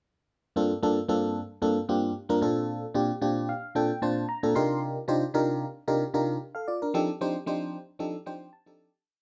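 Moderate studio reverb gives this short funk piece the feel of a band playing live in one room. The only part is an FM electric piano, placed up front with a chorus effect, and its sound is glassy, with a bell-like, fast attack that decays and a noise layer underneath. At 113 BPM in straight 4/4 and in G minor, the whole piece is a breakdown, slick and danceable. The piano plays syncopated chords in rootless voicings over Gm11, Bbmaj9, Cm11 and F13, ranging from G2 to C6, and adds short fills, the first at 3.2 seconds. A fade-out begins at 6.9 seconds, and the piano's last fill runs until the close at 9.1 seconds.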